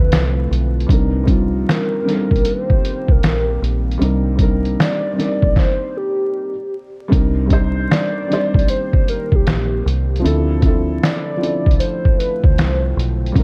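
A mellow, boxy felt-muted upright piano with audible action noise, a warbling, detuned lead with chorus, tremolo and tape echo, a deep, moody pad in the background and a round, foam-muted dub bass open this hazy, nostalgic lo-fi hip hop excerpt at a swung 77 BPM in C dorian, joined at 0.1 seconds by a compressed, pitched-down sampler-style kit with thumpy kick, snare, hi-hat and finger snaps, and a stop from 5.6 to 7.1 seconds breaks the groove before the Cm7 and Dm7 chords carry on under dark vinyl crackle.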